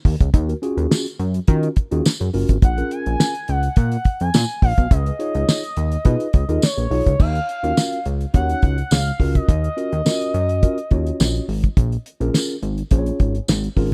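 Early-eighties boogie funk at 105 BPM in Eb minor, danceable and funky, built on a fat, detuned sawtooth analog bass with a quick filter pluck and a dry, dark 70s drum kit with a fat snare and tight kick, both sitting up front alongside a jingly vintage tambourine and a mellow tine electric piano moving through Ebm9, Bbm7 and Db9. At 2.6 seconds a smooth, gliding portamento lead enters with chorus and vibrato on its wave-folded tone, carrying the melody until 11.4 seconds. The sound is that of a rough home demo mix in a studio room, cut from a longer piece.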